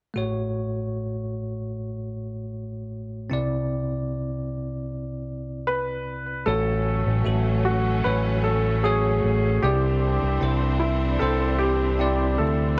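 A bell-like tine electric piano opens this tender, emotional pop passage, moving between A6 and Cadd9 chords in a straight 4/4. At 5.7 seconds a clear concert grand piano takes the melody through tape echo. From 6.5 seconds a lush, bowed string section holds sustained chords while a punchy, up-front fingered electric bass with an envelope filter anchors the low end, all within light reverb and studio ambience.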